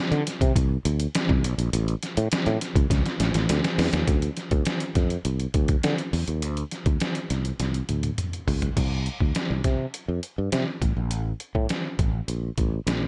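Polished 1980s jazz-funk pop in D minor, this short excerpt moves at 102 BPM in a straight 4/4 with a slick, nocturnal mood. A sustaining fretless electric bass carries the low end from 0.1 s, its tone bright, growly and punchy, sitting direct and up front between A1 and D3. Beside it, a trip hop sampler-style drum kit brings crash cymbal, hi-hat, thumpy kick, medium-tuned snare and toms, sounding compressed, pitched down and muffled, dressed in gated reverb. Drum fills arrive at 2.9 s and again at 7.6 s, each leading into a new section of the passage. Light reverb and digital ambience frame the whole in a bright 1980s-style digital production, and the piece is cut off at 13.1 s.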